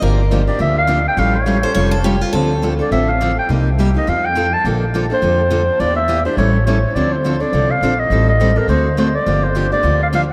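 This fiery, virtuosic stretch of acoustic string swing in the gypsy-jazz manner sits in a vast, echoing space with a long cathedral reverb. An upright bass, played pizzicato on gut strings, sits up front with a woody, dark, thumpy tone. A picked steel-string guitar with fresh strings carries the accompaniment, also up front, where the occasional finger squeak can be heard. A second picked guitar, bright and boxy with a parlour character, adds a background line only until 2.7 seconds. From 0.5 seconds a growling solo clarinet takes the melody, raspy and gritty with scooped notes, light vibrato and a punchy, vintage jazz voice, moving through minor-key changes such as Gm7, Bbmaj7 and A7. At 7.0 seconds the piece shifts into a new section over Dm7 and D7 before this excerpt is cut off.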